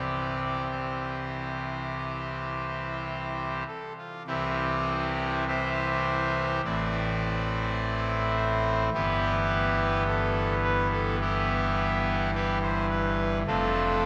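Reverent and serene, this short classical chorale-style excerpt unfolds slowly in 4/4 with a flexible, rubato feel, played solo on pipe organ with a brassy, bright trumpet stop in a baroque voicing. The organ sits up front with an audible chiff on its pipes, spanning from deep notes at F1 up to E5, while a cathedral reverb with a 5.7-second decay lets each chord bloom and linger in the space. The harmony moves from C to Am at 6.6 seconds, then to Em/G and finally Dm7/F.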